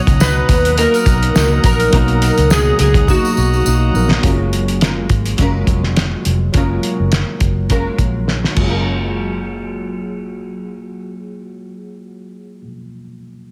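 A slightly broken-up electric slide guitar with tape echo carries the melody until 3.9 seconds in this laid-back, sunny indie and bedroom pop piece, over a muffled, cloth-damped drum kit with a fat snare, a round, foam-muted fingered bass, a fingerpicked nylon-string guitar with analog chorus and warbly pitch drift, a worn, slightly out-of-tune tine electric piano with cassette tape colour, a smooth principal pipe organ with chiff holding chords until 4.2 seconds, and a distant, jingly tambourine, all set in a dense, heavily limited small-room mix.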